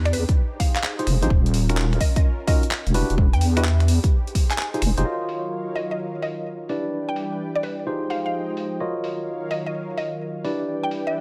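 Late-night and bouncy, this swung two-step UK garage excerpt rides a punchy, up-front electronic kick and a deep, dark wobble bass that both drop out by 5.0 seconds, while a gritty, pitched-up breakbeat kit of finger snaps, handclaps and low-pass-filtered hi-hats, a smooth, warbling sawtooth pad pumping under sidechain, a woody FM mallet pluck carrying the melody through chorus and delay, and bright, clean tine electric piano stabs entering at 1.0 seconds float in a digital ambience over Fm9, Ebm9 and Em9 changes.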